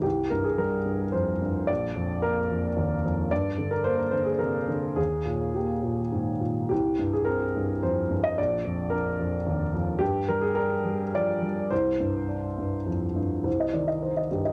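Neoclassical minimalist piano in C minor, wistful and intimate, moving in a rubato 3/4 at roughly 102-113 BPM. A solo upright piano carries the whole 14.5-second excerpt, its woody, natural tone sitting up front with audible action noise from the instrument itself. The harmony moves through C5, Bb, Gm and Eb, then returns to C5, Bb and Gm before a Csus2 at 11.7 seconds, settling onto C minor at 13.5 seconds, where a brief new section begins as the fragment is cut from a longer piece. The part spans from Bb1 up to Eb5, and the sound carries a cassette tape character from a home recording. A moderate studio reverb gives the room a short, gentle tail around the instrument.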